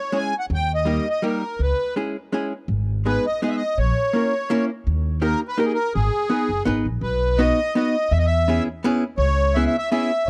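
A reedy, sweet accordion with a light tremolo tuning sits up front and carries the melody of this bittersweet, nostalgic musette waltz, cut from a longer piece. Alongside it, a miked and amplified hollow-body archtop guitar plays picked accompaniment, its electric tone dark, clean and compressed. An upright bass played pizzicato on steel strings enters at 0.5 s, sounding woody and growly as it anchors the low end. The waltz moves in a straight three-beat feel, and at 7.0 s it passes into a new passage with fresh chords before the recording stops at 10.3 s. All three instruments are placed close and up front in a dry small room, giving the intimate sound of a 1970s-style studio recording.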